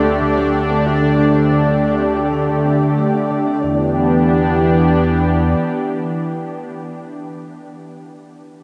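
A straight 4/4 pulse at 92 BPM carries this expansive, mysterious stretch of ambient, sequencer-driven space music in E minor, cut from a longer piece and steeped in a huge, wet reverb, moving from D7sus4 to Em7 at 3.6 seconds. A lush, thick unison pad with chorus sits up front holding sustained chords throughout, over a round, deep analog bass that stops at 5.5 seconds. Until about 3.9 seconds a hollow, bouncy square pluck plays a very quiet riff, and a ringing, metallic vibraphone with medium hard mallets and slow motor vibrato adds faint arpeggios. Until 3.6 seconds a bright, bubbling stepped-filter texture with resonant random filter steps sustains a single high note in the background.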